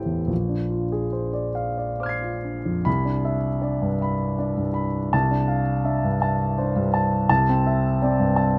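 This is impressionist classical music for solo piano, hazy and luminous in mood, cut from a longer piece. It moves slowly in 6/8 at roughly 46-58 beats per minute, counted in dotted quarters, with a freely breathing rubato in C major. A warm grand piano carries everything alone from the first moment to the close at 8.6 seconds, reaching from deep in the bass up to the high treble, its long sustain letting the harmonies bloom and overlap. The chords drift from Bb9 into Cmaj9 as a new section opens at 2.9 seconds, then through G11/C before settling on C6. Close, detailed microphones place the instrument up front in a nearly dry room, so every ringing note sounds intimate and clear.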